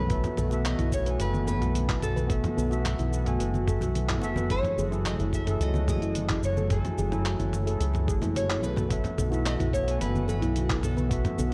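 Sunset chillout at 109 BPM, smooth and warm, in which a small fingerpicked nylon-string guitar with finger squeak and delay carries the melody over a clean tine electric piano, a breathy detuned pad with chorus, a soft round pluck playing dark arpeggios in the background, and an up-front fingered electric bass with an envelope filter, while a gritty overdriven sampler-style soul kit of cabasa, handclaps, hi-hat and toms joins a thumpy electronic kick from 0.1 seconds, followed by very quiet bright congas at 0.2 seconds, all moving between B7sus4 and F#m9 under light digital ambience and the warbling pitch drift of worn cassette tape.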